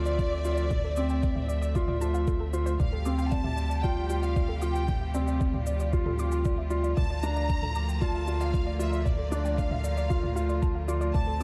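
A straight four-beat pulse drives this melancholic, moving piano and strings electronica, as overdriven electronic shaker and toms enter at 0.1 seconds and a muffled, thumpy kick that sounds pitched down and re-recorded in a large room joins them at 0.2 seconds. Underneath, a round analog bass holds a deep, sustained D with a fast attack, sitting up front and breathing with sidechain pumping. A soft, felt-muted upright piano repeats an intimate, mellow riff through tape echo, while a lo-fi, warbling pluck with a detuned, noisy edge spins arpeggios in the background, coloured by chorus, echo and pumping. A clear studio string section sustains biting, intense chords that also pump, and above them a lush symphonic violin section carries the melody with smooth, even vibrato. The harmony rests on Dm7 before shifting to Bbmaj7 over D at 7.0 seconds, all within a dark, warm production touched by light reverb and small room ambience, in an excerpt cut from a longer piece.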